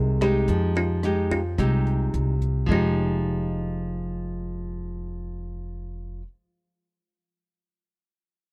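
A bright, woody kalimba carries the melody of this wistful, intimate bossa nova fragment, its short thumbnail plucks sitting mid-forward over an up-front, fingerpicked nylon-string guitar whose classical tone carries audible finger squeak. A growly pizzicato upright bass on steel strings anchors the low end, while a compact cocktail drum kit, dark and smooth with a punchy kick, rim click, hi-hat and toms, plays only from 0.2 to 2.8 seconds. The dry, close sound recalls a 1970s studio, and the piece shifts into a new passage at 2.7 seconds.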